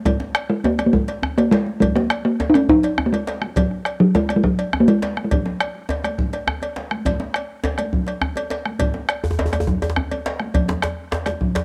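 A home cassette recording with light reverb and a small-room ambience carries this driving, powerful West African drum ensemble, cut from a longer piece in 12/8. A resonant, close talking drum leads the melody up front until 6.8 seconds, over a deep, dark bombo, a dry, metallic cowbell, high-tuned congas with a thick-skinned vintage tone played with soft hands, and a djembe struck with hard hands in a live room. At 9.2 seconds a second djembe enters prominently, tight and cracking with metal rattles, through the end of the cut.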